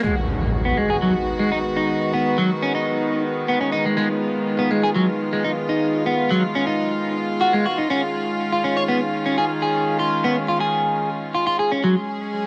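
A bright, twangy electric guitar at the edge of break-up leads this gritty, swaggering breakbeat fragment at 122 BPM in G# dorian, playing a picked riff shaded by subtle chorus, a low-pass filter and digital delay until 11.9 s. Alongside it, a rich chamber string section with a reedy, period-style gut-string tone holds bowed sustained chords through 12.5 s, roughened by vintage 12-bit sampler grit, while an electronic impact sounds during the opening 2.0 s. The harmony moves from G#m7 to C#add9 and then F#sus2, all set in a moderate plate reverb.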